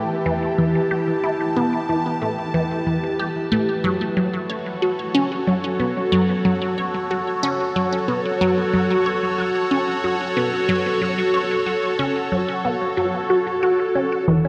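A steady, straight 4/4 pulse at 92 BPM drives this short, mysterious stretch of ambient, sequencer-driven space music, where a squelchy, resonant blip pluck with phaser and delay repeats its riff over a swirling phased analog pad holding sustained chords from Em to F#m at 3.8 seconds. Both sit up front in a vast, echoing cathedral reverb with a cassette-tape cast, and a round, deep analog bass slips in very quietly on a low E only at 14.3 seconds as the cut ends, lending the cosmic mood a faint floor.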